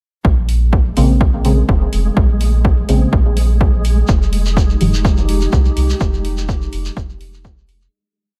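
Dub techno with a hypnotic, meditative pull, built on a lightly swung four-on-the-floor groove that runs through the whole short piece. An overdriven, punchy electronic kick sits up front beside a soft, round dub sub bass that pumps under sidechain, while dark, layered open hi-hats tick quietly in the background. Deep, full-bodied chord stabs with chorus, phaser, cassette-tape colour and dub echo move one shape in parallel from Bbm9 to Fm9, and a filter sweep runs across them. A flickering, granular texture holds a single high note from 0.7 seconds, joined by a hand-played shekere in mellow, compressed sixteenths from 4.1 seconds. A warbling, nostalgic pad with slow attack and long release takes over the sustained chords from 4.6 seconds as the piece fades out in a fairly dry mix.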